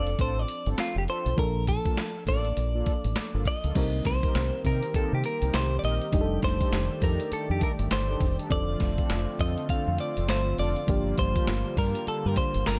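A punchy, confident new jack swing groove opens with a bright, twangy clean electric guitar carrying the melody up front over a gritty, thumpy sampler-style drum kit with handclaps and a round, dark fingered bass, while a mellow FM electric piano and chorused synth brass stabs sit in the background, and a bold, brassy analog pad enters at 3.8 seconds to sustain the chords in this swung excerpt from a longer piece.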